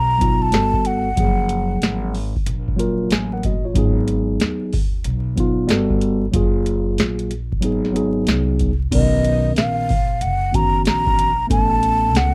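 A breathy concert flute and a woody, pizzicato upright bass open this cool, mellow jazz-hop excerpt together, with the flute's hollow, straight-toned line carrying a short slapback echo before it drops out at 2.1 seconds. A clean tine electric piano and a booming analog drum machine join almost at once, settling into a relaxed 93 BPM groove in 4/4 with a swung sixteenth-note feel. The drums pair a deep kick and crisp snare with metallic hi-hats and a crash cymbal, their sound re-recorded in a large room yet kept up front. The bass sits low and dark, with the thump of gut strings, while the electric piano holds the middle with warm, direct chords drifting through G#m7, Gmaj9 and F#maj9. At 8.9 seconds the harmony shifts to Bmaj9 and then Aadd9 as the flute returns, close-miked and soft in attack, for the closing stretch. The whole track has a dry, close 1970s-style studio sound dusted with vinyl crackle.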